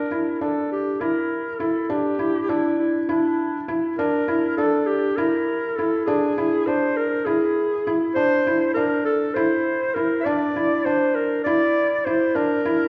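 A breathy clarinet and a felt-muted upright piano begin together at 0.0 seconds in this restless, shimmering piece of contemporary chamber music in 7/8, cut from a longer work and resting on a Dsus2 chord. The clarinet carries the solo melody in a jazz style, with a mellow subtone, vibrato, scooped notes and a smooth top, while the piano plays soft, intimate arpeggios through a thin felt. Both sit up front against a wet recital-hall reverb that places the listener further back in the room, and both play until 12.9 seconds.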